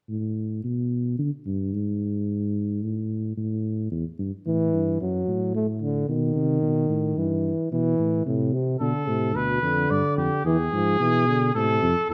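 Contemplative and solemn, this brass-ensemble excerpt from a classical imitative canzona moves at 110 BPM in a straight 4/4, tuned slightly low with A4 at 436 Hz. A dark, punchy tuba opens the bass line at 0.1 seconds, sitting up front in its low register. A trombone enters at 4.5 seconds as accompaniment, its tone showing a smooth top and a slight vibrato. At 8.8 seconds a mellow trumpet adds a second line, touched with light vibrato and carrying a distant, roomy quality. After a brief unharmonized start, the harmony touches G, passes through E minor, F-sharp minor and B, and settles toward A minor by way of a diminished chord and E. Close, detailed microphones and light reverb give the parts clarity and a sober presence.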